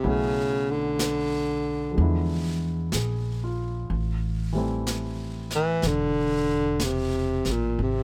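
A slow swung 4/4 at 62 BPM sets a romantic, tender jazz mood in this short eight-second fragment of a longer piece. A breathy baritone saxophone carries the melody up front, its dark, smooth-topped tone sitting low between Bb2 and E3. A concert grand piano with a deep bass register supplies the accompaniment and drops out at 7.8 seconds, while a woody, pizzicato upright bass with steel strings stays prominent beneath. A brush kit in a studio room, with brushed snare and hi-hat, sits softly at the back of the mix. The harmony moves from Bm11 to E7b9 to Am7, and the close, detailed miking with little reverb gives the group an intimate, dry presence.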